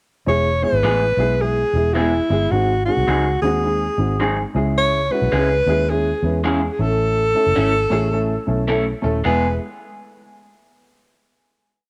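A breathy alto saxophone leads this short, uplifting soul piece, played close-miked and intimate with vibrato, a soft attack and a whispered subtone as it spins a free, jazz-style melody that never settles on a recurring motif. Underneath, a vintage muted electric bass sits up front with a round, foam-muted tone, carrying a melodic, syncopated line that slips in chromatic approach notes. A dark upright piano, woody and boxy with a touch of tube saturation, fills in with closely voiced eighth-note chords. Entering at 0.8 seconds, a lo-fi electric guitar through a small old amp adds short, slightly broken-up chops on the backbeat, colored by a phaser. The swung, danceable groove moves through a brief verse before landing on a final chord at 9.3 seconds, all set in a light reverb.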